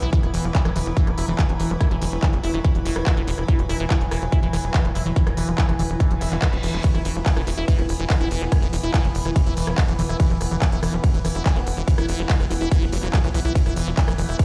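Psychedelic trance excerpt with a hypnotic, driving pull, where a punchy, up-front electronic kick entering at 0.1 seconds anchors a tight, plucky sawtooth sequencer bass, a squelchy, resonant liquid acid bass riff through phaser and digital delay, a techno kit of smooth hats, handclaps, ride and rim click with a tape-warm, small-room tint, a background drone of ring-modulated, moving overtones, a blurred granular cloud pad pumping in the background, and a brief reverse cymbal at 6.2 seconds, all heard on a big sound system in a bare stone room.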